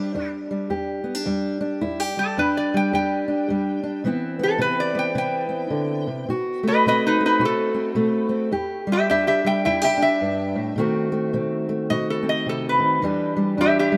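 Acoustic country blues for two guitars, mournful and soulful, moving at 107 BPM in 4/4 with a swung eighth-note feel in E minor. A lap resonator guitar carries the melody with a slide and fingerpicks, its tone metallic and nasal, sitting up front and reaching from D#4 to G5. Beneath it, a fingerpicked steel-string acoustic guitar supplies the accompaniment, dark and woody with the character of old strings, also placed close and spanning E2 to G4. Both play throughout this short 14-second section cut from a longer piece, cycling through Em7, Cmaj7 and B7b9 before settling back on Em7 at 13.0 seconds. A huge ambient reverb with a long 4.6-second decay surrounds the pair, lending the duo a spacious air.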